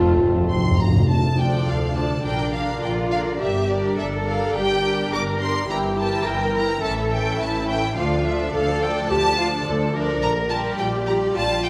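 Round, soft-mallet timpani open this fragment of a quick, graceful classical-period orchestral movement in D minor at 105 BPM with an up-front fill, while mellow French horns, cor anglais and bassoon sound briefly in the background and a dark clarinet and distant flutes are barely audible. From 1.1 s the strings carry on by themselves: a violin section sings the lively melody with vibrato and portamento, a rich second violin line and lush violas fill the middle, and smooth cellos with clear, focused double basses hold the bass through chords moving from Dm through Bb and Gm to A. A scoring-stage reverb gives the recording a wet sound.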